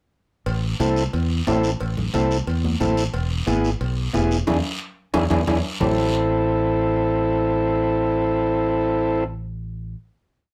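The overdriven combo organ stands out up front, playing vintage, mellow rhythmic triad chords with light vibrato in a driving, fiery cumbia in A harmonic minor at 180 BPM in straight 4/4. Beneath it, a bright, growly fingered electric bass plays a cumbia figure in a low register with a direct, up-front sound. Ringing, high-tuned congas played with hard hands as off-beat hand drums sit in the background alongside cowbell and timbales with a metallic ring, joined by a raspy guiro scraping long and short strokes. The groove moves from Am to E7 and leads into a band accent and drum fill that end the percussion at 5.8 s, when organ and bass hold a final Am chord. The band plays live together in one studio room with moderate ambience.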